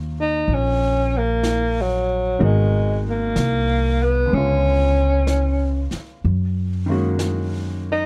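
Swung eighths in 4/4 carry this smoky, wistful jazz ballad fragment, cut from a longer piece, as a thumpy pizzicato upright bass sits up front beside a clear, vintage-toned upright piano in accompaniment. A breathy, whispered tenor saxophone enters at 0.2 seconds with the melody, its subtone, vibrato and scooped notes given a distant sheen by plate reverb. A quiet brushed kit of snare and hi-hat slips in at 0.5 seconds, and the dark, dry production keeps the mood intimate.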